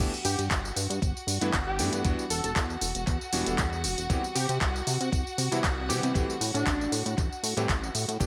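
A light reverb frames this sunny, feel-good nu-disco excerpt at 117 BPM in G major, swung gently on the sixteenths and cycling through G69, Em9, Cmaj7 and Am7 as a drop. An overdriven house kit of handclaps, hi-hat and tambourine sits up front beside a glossy, chorused pulse-wave synth bass, while a thumpy sampler-style kick arrives at 0.5 seconds and a clangy, cutting electric grand piano accompanies with delay under smooth, distant violins that pump against the sidechain. A thick, detuned unison lead with vibrato, 12-bit grit and delay carries the melody from 0.2 to 6.9 seconds, and a faint cabasa ticks in only at the very end.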